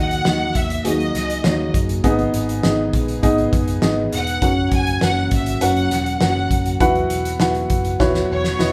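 A wet studio reverb wraps this short piano-driven pop excerpt, which sounds like a band playing live in one room and carries a driving, earnest mood. A dark, woody, slightly detuned upright piano sits up front beside a loose indie drum kit with a fat snare and punchy kick. Under a lush, distant bowed violin section carrying the melody, a round, foam-muted electric bass and a very quiet, breathy pad fill in. The drums enter at 0.1 s and play a fill from 8.0 s over chords moving from D#m through G#m and F# to Esus2.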